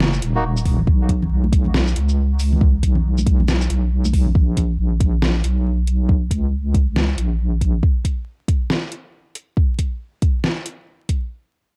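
Heavy and dark, this deep dubstep excerpt rides a half-time, swung groove as a saturated, chorused wobble bass growls up front until 7.8 seconds, a deep electronic kick joins at 0.7 seconds, a drum kit with a deep snare, metallic hats and shaker carries through to the end, and bright, high-tuned congas, struck with hard hands, sit in the background between 0.8 and 4.3 seconds, all set in a dark production flecked with vinyl crackle.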